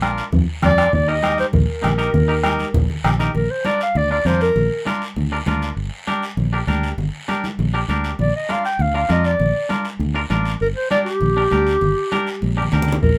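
A festive, joyful cumbia with a light reverb, in which a jazz-style clarinet with light vibrato carries the up-front melody from 0.7 s and returns at 8.2 s over a clean, twangy, fingered electric guitar, a dark, round, foam-muted fingered electric bass, hard-handed congas in the background, a raspy, saturated guiro, and a vintage, soft-beater bombo that drops out after 3.2 s.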